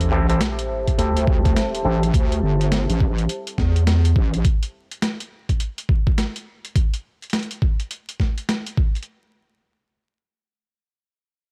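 A heavy, wobbling bass sits up front from the opening, its detuned square-and-sine tone saturated and thickened with chorus as it holds down the low end through 4.4 seconds. This short glitch hop excerpt feels funky and gritty, swung on the sixteenths in 4/4 over an Am7 chord. An overdriven clav through a combo amp fires percussive, stringy stabs with auto-wah, dub echo and a filter sweep in the first two seconds, while an electronic sub drop in the background lands as an impact alongside it. A dark, full-bodied analog pad fades in with slow sustained chords, its chorused sawtooth and sub-octave layers pumping against the beat. The sampler-style drums carry the track to its 9.1-second end, with overdriven hi-hat and medium-tuned snare and a thumpy, up-front kick entering at 0.9 seconds, all re-recorded in a small room for a dry, compressed sound under a layer of vinyl crackle.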